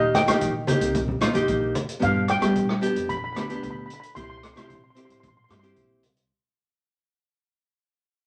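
A straight 4/4 calypso groove bounces along in this carefree, fading fragment of a longer piece, driven by a small-room street-band drum kit with a boomy kick, hi-hat and rim click, joined by ringing, low-tuned congas under soft hands that drop out at 1.9 seconds. Up front, a mellow, shimmering steel pan played with soft rubber sticks carries the melody over a bright, full-bodied fingerpicked nylon-string guitar, while a woody pizzicato upright bass anchors the Eb, G7 and C changes. A wet studio reverb and a layer of vinyl crackle wrap the whole mix.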